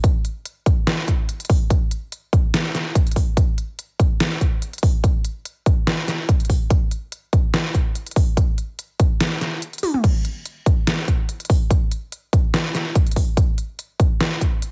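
A half-time 4/4 groove at 144 BPM, with a light swing on the sixteenths, drives this lush, emotional future bass excerpt built entirely from drums. An up-front, punchy electronic kick anchors a layered dubstep kit of deep snare, crisp hi-hats, crash cymbal and toms, both parts tape-warm and set in a small room inside a heavily compressed, radio-like digital ambience. The kick drops out at 9.6 seconds as a drum fill lands at 9.8 seconds, then returns at 10.0 seconds.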